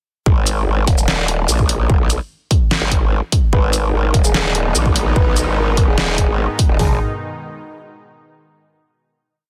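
A dense, heavily limited modern master with little reverb carries this short, heavy and aggressive wobble dubstep piece in G# minor at 147 BPM in a half-time feel, tuned to A4 = 439 Hz. The drop hits at 0.3 s with an up-front growling bass, saturated through overdrive and chorus, that wobbles at changing speeds, while two layered electronic drum kits, re-recorded in a large room, drive a half-time beat of punchy kick, floor tom, deep snare, shaker and hi-hats. At 3.5 s a dark, boxy concert grand piano repeats a riff with tape echo in the background beside a lush, detuned supersaw pad that sustains chords with sidechain pumping, before a final chord rings from 6.8 s.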